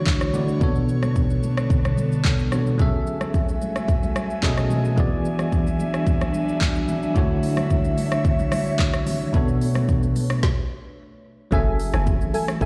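Amapiano at 110 BPM with a deep, soulful mood, this excerpt sets a bell-like tine electric piano and an airy, breathy pad with chorus and sidechain pumping over jazzy ninth chords, while a layered deep house kit with woody snare and smooth hats drives alongside faint, distant congas, until a stop at 10.4 seconds gives way at 11.5 seconds to a drop where a hollow, bouncy log drum bass and dark, full-bodied chord stabs carrying tape echo arrive, all set in a large, reverberant room.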